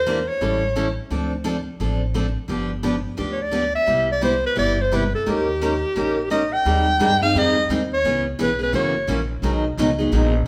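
Acoustic string swing in the jazz manouche style, charming and playful at a brisk 173 BPM with a lilting swing, this fragment of a longer piece centres on a clear, forceful clarinet soloing up front with vibrato and scooped notes, heard briefly at the start and then again from 3.3 to 9.3 seconds. A bright, picked steel-string acoustic guitar sits up front as accompaniment, while a woody, thumpy upright bass on gut strings plucks a dark foundation through a chord progression that moves from A7 and Dm7 toward Abmaj7, Gb7 and a closing B69. The trio plays live in one room, bathed in a large studio reverb.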